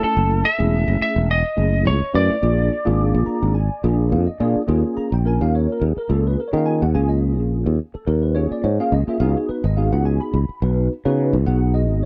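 A growly, up-front fretless electric bass sustains beneath this funky, nocturnal piece of electric jazz fusion, which moves at 106 BPM in 4/4 with a light sixteenth-note swing and settles into Eb minor from 4.7 s. A slightly broken-up, picked lead guitar with tape echo carries the melody until 4.1 s, while a clean tine electric piano heard through its built-in speakers plays accompaniment with ensemble chorus and adds a fill from 3.0 s. The dry, close sound recalls a 1970s studio, and the passage is cut from a longer piece.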